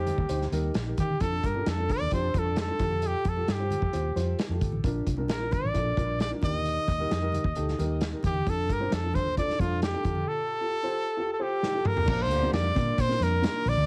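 A bright, forceful trumpet with scooped notes and tape echo leads this uplifting, uptempo 1960s-style soul excerpt at 132 BPM in Bb major, over a dark, woody upright piano, a round foam-muted electric bass, a small-room drum kit with a punchy kick and dark cymbals, and very quiet hard-hand congas. A drum fill at 11.6 seconds then brings in a distant horn section with light vibrato from 12.1 to 12.7 seconds, all heard through a heavily compressed radio-style cassette sound.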